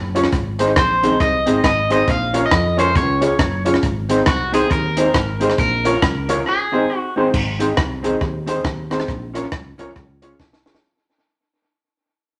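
Cheerful and bouncy, this ska excerpt moves at 137 BPM in 4/4 with a swung eighth-note feel, set in Ab mixolydian and cycling through Ab, Bbm and Db chords. A round, dark fingered electric bass anchors the low end, while a clean hollow-body jazz guitar sits in the background and a woody upright piano with tube saturation and long sustain adds stabs in the same register. Up front, a compact cocktail drum kit with a punchy kick, high-tuned snare, rim clicks, dark cymbals and a touch of tape echo drives the groove, joined by a grainy, very quiet cabasa. The twangy, slightly broken-up picked electric guitar carries the melody from 0.8 to 7.1 seconds, standing forward in the mix. The whole band sits in a wet studio reverb, and from 7.3 seconds the track fades out, closing on a drum fill at 10.4 seconds.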